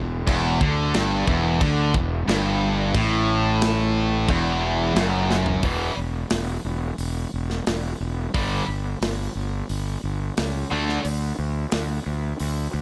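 Lightly reverberant studio sound opens this aggressive, driving hard rock excerpt at 89 BPM in E minor, where a bright high-gain guitar and a hollow-bodied overdriven guitar in the background churn out riffs over a growly, up-front fuzz bass. A tight metal drum kit with a medium-tuned snare and rolled-off top joins at 0.3 seconds, while a sludgy double-tracked guitar thickens the riff until 5.6 seconds. A drum fill at 5.3 seconds pushes the music from its opening E minor into a passage moving through E5, G5 and D5 power chords.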